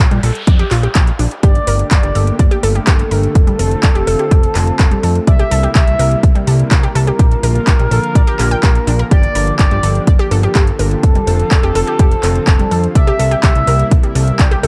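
A dark, warm, dry mix opens this cut from a longer progressive house track in G dorian, moving at 125 BPM in a straight 4/4 with an expansive, bittersweet mood. A layered deep house kit of handclaps and metallic hi-hats is soon joined by a punchy, overdriven electronic kick that sits up front, while a fat, detuned analog bass built from sawtooth and square waves pumps with sidechain beneath. A round, bright analog pluck spins arpeggios from G3 to G5 through chorus and digital delay, and a faint noise sweep sounds in the background during the opening moments. At 1.4 seconds a lush, thick unison pad arrives with slow-attack sustained chords, and a smooth, warbling vintage synth lead carries the melody between A4 and G5, colored by chorus, phaser, vibrato and delay. The harmony moves from Bb through Gmadd9, F6 and C7 and then repeats, giving the loop its yearning lift.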